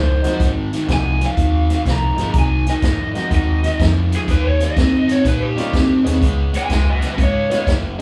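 An overdriven lead guitar through a small cranked amp opens this swaggering, soulful electric blues shuffle excerpt with a dark, lo-fi melody over a crunchy, up-front guitar riff and a round, foam-muted fingered bass, joined at 0.2 seconds by a vintage drum kit with a punchy kick and a rolled-off top and a bright, woody upright piano, all played live in a small room with light reverb as the chords move from Ab9 to Eb7 and Db7sus2.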